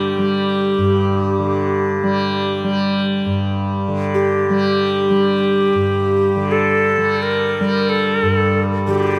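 World meditative music in free time, haunting and spacious, this short cut from a longer piece sets a breathy, bright Native American-style cedar flute up front, its straight tone and soft attack carrying the melody between G4 and Bb4 through a diffuse ambient delay. A softly plucked tanpura drone sits just as close, buzzing and shimmering from G2 to G3 for the full 9.2 seconds, while a very quiet bronze singing bowl struck with a felt mallet rings on D4 with slow, metallic beating until 3.6 seconds. A huge ambient reverb with a six-second tail surrounds it all.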